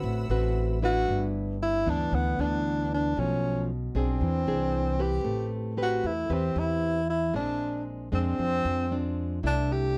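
Dry, close and detailed, this sunny, sophisticated bossa nova at 115 BPM in G major sets fingerpicked, classical-style nylon-string guitar and pizzicato, woody upright bass beneath a mellow, breathy tenor saxophone with vibrato and scooped notes that enters up front at 0.8 s, while a barely audible baby grand piano and a dark, soft-attack bowed string section sound only through the first 1.1 s before the chords move from G6 through Bm7b5 and E7alt to C69.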